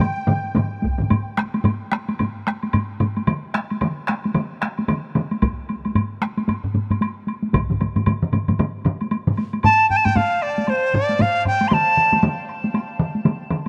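Japanese traditional taiko drum ensemble music, powerful and driving, with a swung feel that speeds up through this short cut from a longer piece, as heavy-stick solo taiko drums, compressed and saturated, drive beneath several up-front taiko ensembles struck with hard or heavy sticks, some close and dry, one in a small room, while a woody woodblock sits low underneath and a bright, reedy bamboo dizi with a buzzing membrane, airy vibrato and tongued notes appears briefly at the start and returns with the melody at 9.6 s, the whole sound bathed in a huge ambient reverb.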